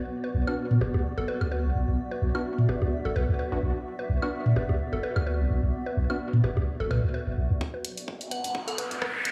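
A dreamy, reverb-soaked mix with a lush hall ambience frames this hypnotic, cool minimal techno passage at 128 BPM in B minor, cut from a longer piece and swung lightly on the sixteenths. A cloudy, evolving granular pad breathes with sidechain pumping under a woody, round mallet-like pluck riff that sits between A4 and B4, smeared by chorus and tape echo. A deep, punchy sine sub bass with a pitch-drop attack and tube saturation holds the low end up front. Muted, detuned dub chord stabs with a cassette-tape grain and an analog-toned set of electronic woodblock, toms and bongos color the groove until they fall away at 6.2 and 7.0 seconds. From 7.6 seconds a build-up begins, bringing in a tape-warm electronic kick recorded in a large room, a house kit of hi-hat and rim click, an up-front riser, and a brief glassy, crystalline bell on F#5.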